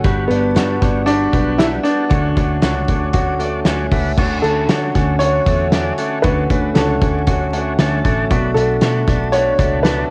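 A bright, breezy snippet of jangly indie pop opens with a buzzy, heavy-vibrato combo organ in plate reverb, a twangy direct-recorded clean guitar picking arpeggios, a very quiet, slightly broken-up guitar through a small old amp, a round, foam-muted picked bass and an up-front loose drum kit with fat snare, punchy kick and dark cymbals colored by cassette tape, while a woody upright piano carries the melody from 0.3 s, a crisp group handclap joins briefly from 0.6 s, and the organ adds a fill at 7.5 s, all heard through a home cassette recording with vinyl crackle.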